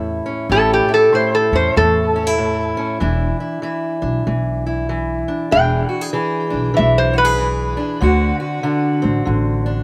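Acoustic country blues with a laid-back, swaggering swing, where a metallic, nasal resonator guitar, played with a steel bar and fingerpicks, carries the melody up front from 0.5 seconds over a boxy parlour steel-string guitar fingerpicked with a slapback echo and a woody, thumpy upright bass plucked on gut strings, all moving from A7 to E7 to D7 in a dry, open-air sound.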